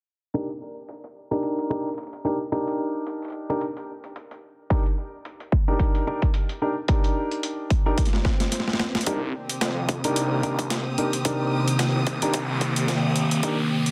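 A punchy, overdriven electronic kick lands at 4.7 seconds in this playful, gritty glitch hop excerpt at 110 BPM with a swung 16th feel, joining filter-swept stabs from a natural-sounding baby grand piano with tape echo and sidechain pumping, and a pitched-down, sampler-style boom bap kit of hi-hat and high-tuned snare, before a drum fill and background swell give way at 9.1 seconds to a build-up where a swirling phased saw bass and a dark, distant bowed chamber string section gather, joined at 9.5 seconds by a warbling, nostalgic lo-fi pad with 12-bit grit and chorus, alongside an electronic riser over an Ebmaj7/D to Cm7 change.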